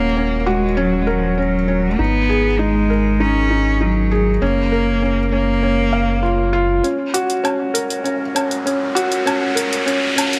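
Piano and strings electronica, moving and hypnotic, in which a rich, vibrato-laden bowed cello sings the melody and a round, deep analog bass with tube saturation anchors a soft felt-muted upright piano riff, its action noise audible, with tape echo on cello and piano, until at 6.8 seconds the bass gives way to an overdriven electronic hi-hat and woodblock that carry a build-up, joined by an electronic riser at 7.9 seconds, the whole set in light reverb and digital ambience.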